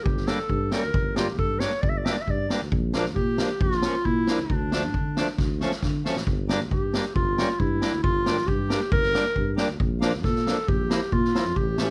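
A clear, up-front clarinet opens this bittersweet, festive klezmer excerpt at 136 BPM in a straight 4/4, carrying a classical-style solo melody from D4 to E5 through plate reverb over chords moving from Gm to Bb and Dm. A mellow tuba with light vibrato and a smooth top joins almost at once on the bass line, while a boomy, acoustic street-band drum kit with a medium-tuned snare and a rolled-off top, captured in a small room, sits up front from that same moment, and a reedy, hollow accordion enters in the mids at 0.3 seconds. The same section plays twice, with a drum fill from 5.4 to 6.3 seconds leading into the repeat, all within a light reverb.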